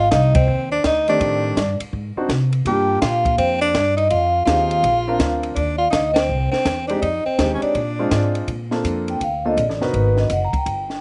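A soft-mallet vibraphone carries a mellow, ringing melody with motor vibrato over a breathy, up-front tenor saxophone line full of scooped notes, a woody pizzicato upright bass and a compact, dark cocktail kit with ride cymbal, a high-tuned snare and a punchy kick, all in a relaxed, sophisticated small-group swing and bop feel with a couple of band accents. An intimate grand piano with audible action noise adds accompaniment from 1.1 seconds. The saxophone drops out at 8.3 seconds, and the vibraphone takes a solo from 8.5 seconds in this dry passage cut from a longer piece.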